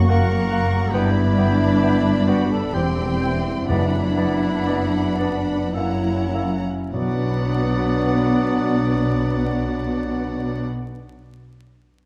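A full orchestra opens at once in an elegiac, melancholic classical passage in three, cut from a longer piece. A rich, vibrato-laden violin section sings the high melody, while an airy flute section, a smooth second violin section, a distant clarinet and, from 0.1 seconds, a roomy oboe weave second lines above lush violas, a mellow bassoon and French horn chords. Beneath them a ringing, thumb-plucked concert harp spreads arpeggios, expressive cellos with portamento and bowed double basses anchor the bass, and very quiet calf-head timpani enter at 3.7 seconds, while the rubato phrasing slows through the first 6.9 seconds before settling on a minor chord, set in a dark, warm production with long scoring-stage reverb and vinyl crackle.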